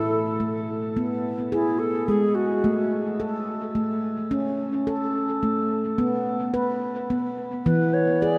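This short excerpt of meditative world music, built around tuned percussion, moves in a gentle triple metre with a light swing. A handpan carries steady arpeggios from start to finish, its stainless-steel tone ringing and mellow under soft fingertips, sitting up front in the mix. Above it, a low wooden flute in the Native American style offers an airy, straight-toned melody with a soft attack and rolled-off highs, sounding until 2.9 seconds and returning briefly at 7.7 seconds. Both instruments are bathed in shimmer reverb and a diffuse ambient delay, and the lush hall around them rings for 2.9 seconds, leaving a dreamy, reverb-soaked haze. The harmony drifts through A, G#m and E, with open stretches where the chords fall away, keeping the mood calm and contemplative.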